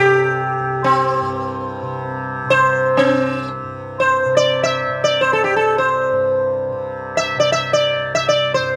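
The sitar sits up front in this short Hindustani classical fragment, its plectrum-plucked melody ringing between C4 and E5 with a halo of sympathetic strings. Beneath it, a softly plucked tanpura holds a low drone from C2 to C3, set well back in the balance and sounding through the full 8.8 seconds alongside the sitar. Both acoustic instruments carry a characteristic buzz, the sitar glinting with a shimmering edge and the tanpura adding a warm, shimmering bed. The music moves in free time, with a radiant, devotional mood, and the phrase material heard in the first 3.6 seconds returns for the remainder. Close, detailed microphones and a light reverb keep the sound intimate and clear.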